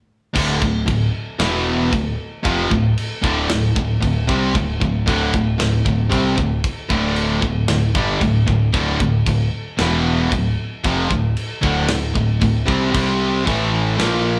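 Captured as a band playing live in one large studio room with moderate reverb, this heavy, epic metal excerpt bursts in at 0.4 seconds in a half-time feel, an up-front overdriven electric guitar riff joined by a crunchy double-tracked guitar in the background and a very quiet high-gain guitar, all over a growling, amped bass and an acoustic metal kit of tight kick, medium-tuned snare and crash, as the riff moves from D5 through Dm toward C5 and A5 near the close.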